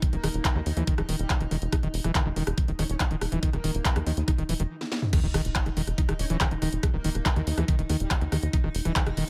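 A hypnotic psychedelic trance excerpt at 141 BPM opens on an up-front, tape-warm knocking kick, an overdriven kit with cracking snare and bright hats, a dark, punchy sequencer bass, a squelchy, distorted acid riff, a metallic FM wobble bass in the background, and an evolving phased pad holding an Eb5 chord, before a brief stop at 4.7 seconds and a drum fill drop at 5.1 seconds into an impact and a very quiet sub drop, all in a dry sound.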